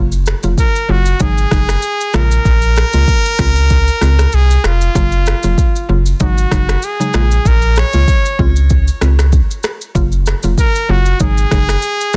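Romantic and sunny, this short cut from a longer afrobeats piece in Db major rolls along at 96 BPM with a light 16th-note swing, as a bright, close-miked solo trumpet with digital delay carries the pop-style melody from 0.6 s over a woody, chorused mallet-like synth pluck, a deep, thick saturated sub bass sitting up front, and a produced electronic afro-pop kit of finger snaps, rim clicks, shaker and a deep kick, all cycling through Gbmaj7, Ab7sus4, Bbm7 and Dbmaj7 in a dry, dense, heavily limited modern mix.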